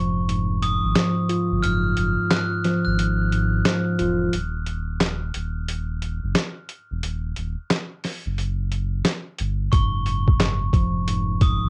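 A swung, gritty, pitched-down sampler drum kit of thumpy kick, snare, hi-hat and handclaps drives this dark, tough 89 BPM boom-bap hip-hop piece in Eb minor under a deep, sustained sine sub bass, while a mellow tine electric piano and a bright, bell-like glockenspiel carry the Gbsus2-to-Ebm chords and melody through cassette-tape filtering. The glockenspiel drops out at 4.3 seconds and the piano at 4.4, leaving bass and drums, and both return at 9.7 seconds in a lightly reverberant home-cassette sound.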